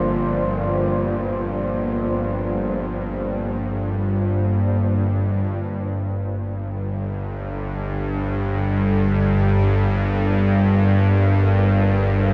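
A tense, string-like bowed drone sits bright and up front on a low G throughout, its detuned sawtooth edge carrying vibrato and a noise layer, beneath a deep, moody pad of chorused sustained chords that fades in from 5.6 seconds as the harmony moves from Bb to G minor, all in free time within a huge, wet reverb and a cassette-tape haze for an ominous, desolate dark ambient drone cut from a longer piece.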